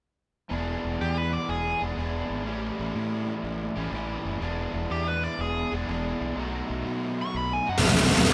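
A swung 4/4 groove at 123 BPM drives this gritty, swaggering rock fragment in E mixolydian, moving through E7, A7 and B7 as a band plays live together in one room with light reverb. A bright, cranked stack guitar, double-tracked and up front with overdrive and spring reverb, picks the riff from 0.5 seconds, while a growly, fuzz-laden fingered electric bass, overdriven and direct and amped, holds down the low end. A warm, biting lead guitar, overdriven and picked, adds a brief melody at 1.0 seconds and returns at 4.9 seconds to carry on until the cut.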